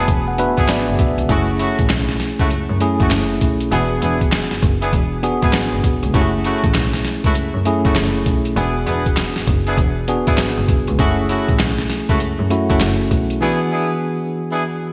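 R&B in a new jack swing vein, confident and slick with a swung groove, this short cut opens on a clean tine electric piano fill before the up-front piano chords settle over E7 and F#m7. They are joined by tight, soft-attack jazz horn stabs trailing digital delay, a biting, intense bowed double bass with light vibrato, and a gritty, compressed, pitched-down sampler-style drum kit of thumpy kick, medium-tuned snare, hi-hat and handclaps drenched in gated reverb. Everything sits in a lush hall ambience with a glossy 1980s-style digital sheen until the break from 13.4 s, where the piano and horns carry on.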